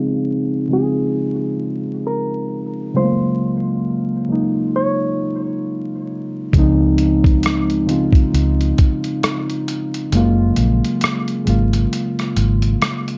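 Mellow and nostalgic, this lo-fi hip hop excerpt in Db major sits at a relaxed 67 BPM with a swung feel, cut from a longer piece and wrapped in vinyl crackle, a small room's reverb and a filter sweep across its full 13.2 seconds. Muted, felt-like synth keys with a warbling chorus, a soft tone and a fast, decaying attack carry the Dbmaj9 and Gbmaj9 chords up front, while a dark, clean, picked hollow-body jazz guitar plays the melody through a low-pass filter and analog delay until 6.1 seconds. At 6.5 seconds a round, punchy, foam-muted electric bass and a compressed, sampler-style drum kit with a thumpy kick, hi-hat and rim click enter, and the kick drops out from 10.1 seconds.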